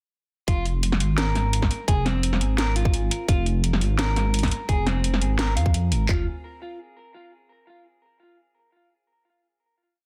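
A deep, rumbling detuned saw bass sits up front with long gliding notes on F minor in this short, cinematic and spacious half-time drum and bass piece at 171 BPM, alongside a tight kick, toms and handclaps, a cracking snare with metallic hi-hats, and a clean, hollow-toned semi-hollow electric guitar picking a repeating 16-step arpeggio through tape echo, all in digital ambience with a dense, heavily limited modern master, as the drop runs from 0.5 to 6.1 seconds before a final note rings to 7.5 seconds.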